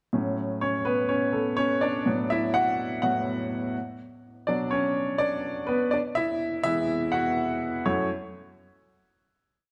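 Bittersweet and dramatic, this short pop piece in F# minor moves at 124 BPM in a straight 4/4 and is carried entirely by a solo grand piano. The piano sounds clear, present and up front, ranging from F#2 to F#5 as it plays an eighth-note chord rhythm in drop-2 voicings. The brief pre-chorus passage runs from A6 through D6/A, Bm and Eadd9 before landing on a closing F#m7 at 7.8 seconds. A moderate recital-hall reverb gives the piano a natural sense of space that lingers as the final chord rings out to about 9.7 seconds.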